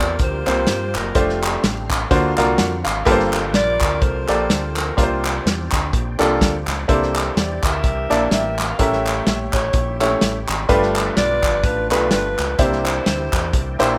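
A bright grand piano sits up front in this uplifting, soulful uptempo gospel excerpt, its brilliant, polished accompaniment with short sustain entering at 0.5 seconds and breaking into a fill between 2.1 and 3.1 seconds. The groove moves at 126 BPM in 4/4 with swung eighths, driven by a soul drum kit of hi-hat, tight kick and medium-tuned snare that sounds acoustic and mid-forward in a small room, its top rolled off. A fingered electric bass adds a dark, round, punchy low end, while a group handclap rings hollow and distant, as if from a large room. A mellow saxophone section carries the melody with light vibrato and a tape echo, and a very quiet overdriven tonewheel organ holds thick, gritty chords through a slow rotary speaker with chorus vibrato. The harmony moves through rich chords such as C7sus4, D7alt, Gm11, A7b9 and C9, framed by light reverb and studio ambience in a rough home demo mix.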